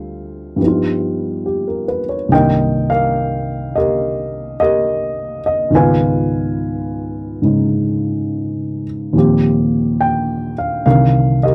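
A dry, close 1970s-style studio sound with light reverb frames this 11.5-second cut from a late-night, intimate jazz ballad at 70 BPM in swung 4/4, where a solo baby grand piano, dark and mellow with audible action noise and short sustain, sits up front and moves through Dm7 and Gaug7 to Cm7, Db9 and Eb69 before returning to Cm7.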